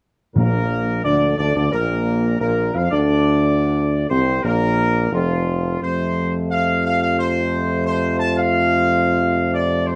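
Close, detailed microphones and light reverb frame this triumphant, solemn classical brass excerpt in B-flat major, moving at a steady 88 BPM in 4/4 from a B-flat chord to F at 5.8 seconds. A warm trumpet section carries the melody up front, while a clear tuba anchors the bass, a mellow French horn section with light vibrato holds chords in the background, and a very quiet, distant trombone section sustains the low harmony. Round, soft-mallet timpani play B-flat only from 0.4 to 1.3 seconds, sounding close and dry.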